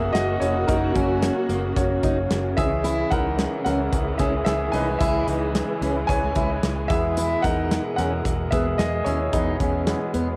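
A straight 4/4 pulse at 111 BPM drives this hopeful slice of piano-driven pop, cut from a longer piece. The modern studio drum kit sits up front with a punchy kick, a medium-tuned snare and hi-hat in a pumping room, while a vintage muted fingered electric bass adds a dark, round, foam-muted low end. The concert grand piano carries a solo throughout, intimate and polished, with deep bass, long sustain and audible action noise. A fingerpicked dreadnought steel-string guitar enters at 0.4 seconds with a full-bodied riff, and a distant studio string section holds lush bowed chords with vibrato and portamento. The piano, strings and guitar take on a cassette tape coloring within the light reverb and small room ambience of a home cassette recording, as the harmony moves from F# to C#m at 2.6 seconds and to E at 6.9 seconds.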